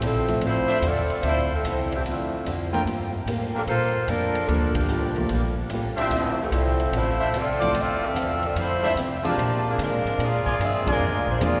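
A warm saxophone section with light vibrato carries the melody up front in this sultry, swinging big band jazz excerpt in D minor at 147 BPM, over woody pizzicato upright bass, a boxy picked archtop guitar with old strings, an intimate baby grand piano with audible action noise, an airy, polished drum kit with a punchy kick, and clear trumpet stabs from 0.7 seconds, with band accents at 4.7 and 10.8 seconds, set in a wet cathedral reverb.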